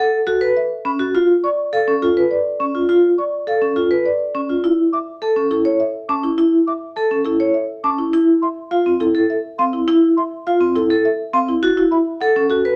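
A straight 3/4 pulse at 103 BPM drives this propulsive, hypnotic excerpt of minimalist classical pattern music, with chords moving from F#m through Dm6, A5 and Fmaj7 to F#m7. Up front, a vibraphone struck with medium hard mallets rings out metallic arpeggios with a fast motor vibrato, while a softer marimba played with soft mallets carries the melody in round, woody tones from its rosewood bars. From 0.9 seconds a close-miked silver concert flute adds pure, hollow, tongued arpeggios with vibrato high above, all set in a light reverb.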